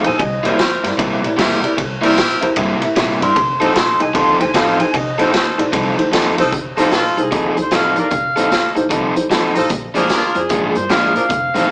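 An overdriven, amplified harmonica takes the lead from 7.0 seconds, its gritty tone carrying light vibrato and tongue slaps in a jazz-style solo up front. This is a soulful, swaggering electric blues shuffle at 152 BPM in 4/4 with a swung eighth-note feel, in F mixolydian, cut from a longer piece. Before the harmonica enters, a clean, twangy lap steel guitar plays a fingered slide solo with volume swells, stopping at 6.5 seconds. Underneath, a crunchy electric guitar picks a riff up front, and a mellow, woody upright piano with short sustain plays accompaniment. A brilliant horn section adds ensemble stabs in the background, while a pizzicato upright bass with thumpy gut strings sits low in the mix. A raw garage drum kit of hi-hat, kick, ride and snare sounds saturated and punchy, with dark cymbals and a rolled-off top in a pumping room, and the band plays live in a stone room with moderate reverb and a small-speaker sound over C7, F7 and Bb7.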